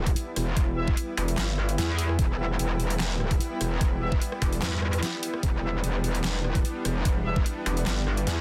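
Heavy and chaotic, this half-time wobble dubstep excerpt in E minor at 148 BPM is driven by an up-front, distorted metallic wobble bass with chorus, joined in short bursts from 1.2 s by a second, saturated wobble bass, while an overdriven, knocking electronic kick and a drum kit of deep snare, bright hats, handclaps and rim click punch through; in the background a lush supersaw pad and a blurred, evolving granular cloud pad pump under sidechain, and distant mellow brass stabs with digital delay enter at 0.8 s, within a dense, heavily limited modern master.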